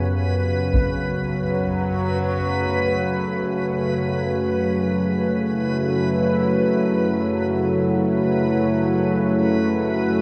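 A bright, up-front sawtooth pad with a filter swell and shimmer reverb sustains evolving chords in this cavernous, dark ambient drone excerpt in free time and F# minor, moving from G/F# to F#m at 0.7 seconds over a calm, detuned, organ-like drone with ring modulation, a reversed, granular, dreamy texture on B4, and a brief burst of hard-stick taiko from 0.7 to 1.0 seconds sitting in the background, all bathed in a cathedral reverb with a 5.8-second decay.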